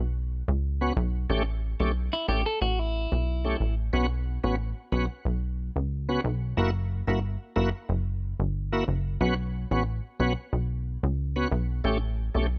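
A punchy, wave-folded analog bass with a snappy filter pluck drives this tough, bouncy dancehall cut at 91 BPM, joined from 0.8 seconds by a shouting, lightly overdriven tonewheel organ with key click, chorus vibrato and slow rotary speaker, while a clean, twangy electric guitar adds brief picked arpeggios between 2.1 and 3.7 seconds over a dry, up-front mix that cycles through Bsus2, A7 and F#7.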